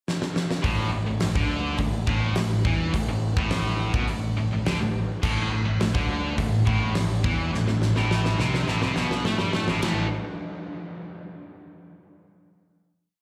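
A heavy, menacing hard rock piece opens with a drum fill on a huge arena kit that sits up front, its punchy kick, fat snare and bright cymbals ringing in a pumping hall. At 0.6 seconds three picked electric guitars enter together on single-note riffs in A minor. The crunchy overdriven guitar sits very quiet in the mix, the tight distorted guitar carries slapback echo, and the double-tracked overdriven guitar with its own slapback echo stretches higher than the others while staying in the background. A growling fingered bass, direct and amped with overdrive, drives eighth notes that double the guitar riff beneath the drums' big rock groove. Another drum fill starts at 7.5 seconds and leads to a final A5 chord at 9.8 seconds, all heard with the small-room ambience of a live gig played through a club PA.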